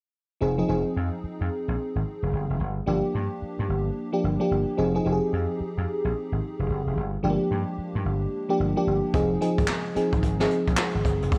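A bouncy, swung new jack swing groove carries this confident R&B clip, where a punchy, amped vintage slap bass and a lush, warbling FM electric piano with a soft pad layer and chorus move between Fm7 and Gm7 chords from 0.4 seconds, until a boomy, brushed jazz drum kit with handclaps, hi-hat and a medium-tuned snare joins at 9.1 seconds, all set in light reverb and studio ambience.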